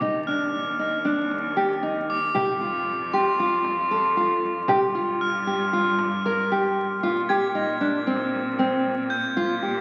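Set in a restless, playful 9/8 at 231 BPM in eighths, this contemporary chamber piece, cut from a longer work, pairs full-bodied fingerpicked nylon-string guitar arpeggios up front with shimmering, bell-like crotales struck with brass mallets, a focused bowed cello carrying the bass line with vibrato, and a small, bright frame drum set back that stops at 6.4 s, all moving through Ebmaj7(no3), Fsus2 and G7(no3) before a rootless Fmadd9/Bb at 7.0 s, heard through a wet concert-hall reverb and the crackle of a very old 78 rpm record.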